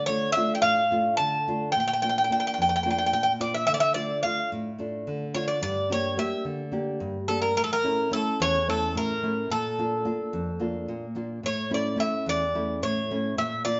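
Greek folk in a brooding, cool mood, this short cut from a longer piece moves in a straight 7/8 at 217 BPM (eighths) in A phrygian dominant, tuned to A4 = 436 Hz, with chords passing through Dm, Bb, Gm and A. Up front, a picked bouzouki carries the melody with a metallic, double-string ring and some octave-doubled courses, while a full-bodied nylon-string guitar fingerpicks a deep classical accompaniment; a new section arrives at 11.4 s on an A chord. The two play live together in one room with a wet studio reverb, and the sound is mellow with a softened top end.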